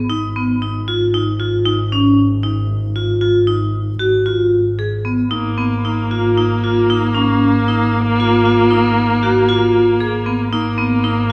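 A dark, woody bowed double bass opens on a low G#, and a bright vibraphone struck with hard mallets joins almost at once, ringing out metallic arpeggios with a medium motor vibrato over a G#5 harmony. This hypnotic, urgent piece of contemporary chamber music moves at 115 BPM in an uneven 5/4, set in G# dorian and tuned to A4 = 445 Hz. At 5.3 seconds a rich, focused bowed viola with a smooth top adds a second line, and all three sit up front yet are heard from further back in a reverberant recital hall in this short cut from a longer work.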